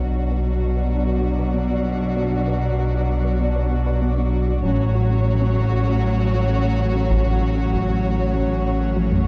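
A straight 4/4 pulse at 97 BPM drives this tense, vast cinematic excerpt of hybrid orchestral and electronic film score in B minor, where a tight sequenced synth arpeggiates alongside a shimmering chorused pulse-width pad under a filter sweep, bowed violin sections with vibrato carry the melody and a second line over a lush viola section, a clean sine sub bass anchors bowed cellos and double basses, a dark French horn section holds chords from 0.9 s, and a taiko ensemble with heavy sticks joins at 4.6 s as the harmony moves from Bm to F#m/A before a closing drum fill, set in a moderate scoring-stage reverb with a warm production.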